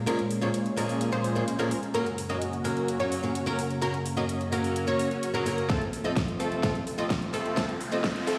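Festival progressive house at 128 BPM, this powerful, anthemic build-up is cut from a longer piece and tuned to A4 = 437 Hz. It moves from Bbm7 to Gb and F as filter sweeps move across a huge, detuned supersaw riff and a thick, warbling vintage pad, both pumping to the sidechain, while a boxy picked acoustic guitar with finger squeak plays swing-style accompaniment up front and a bright, 12-bit-gritty unison pluck arpeggiates in the background. A big-room kit adds an overdriven huge snare and metallic hats, an overdriven electronic kick punches in with a drum fill at 5.7 s, and a riser joins at 6.8 s, all heard as if played on a big sound system in a bare stone room with moderate recital-hall reverb.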